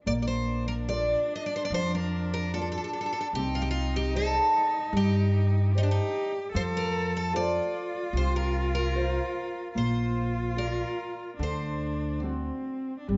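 A fado-style ballad in Bb major at 74 BPM in 4/4, played with a rubato feel and a longing, mournful mood, heard as a short cut from a longer piece. A picked twelve-string acoustic guitar carries the melody up front, its bright, shimmering, octave-doubled tone catching finger squeaks as it plays until 12.6 s. Beneath it, a close, bowed cello adds a smooth second line with vibrato and a slapback echo, while a dark nylon-string guitar supplies fingerpicked classical accompaniment. An upright bass, played pizzicato on steel strings, sits up front with a woody sound. The harmony moves from Bb through Cmadd9 and F back to Bb, closing on D7, all set in a moderate recital hall reverb with a dark, warm production that tops out at 7.7 kHz.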